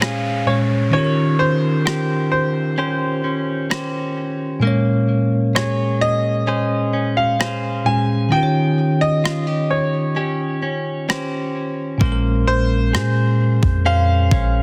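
Contemporary R&B at a slow 65 BPM in 4/4 with a straight feel, this excerpt in Bb dorian carries a late-night, longing mood, moving between Bbm9 and Eb13 chords. A clear concert grand piano plays the melody between C5 and Ab5, touched with digital delay, over a bell-like tine electric piano that sits up front with bright, clean accompaniment. A direct-recorded electric guitar adds picked, compressed arpeggios, also through digital delay, while a crisp 8-bit drum machine supplies a thumpy, overdriven kick and rim click. A downlifter sweeps quietly in the background until 4.6 seconds, and the opening stretch plays as a break until 12.0 seconds, when a deep, boomy 808-style bass with a fast attack and decaying tone arrives between Bb1 and Bb2. Light reverb surrounds the parts, and the master is dense and heavily limited in a modern style.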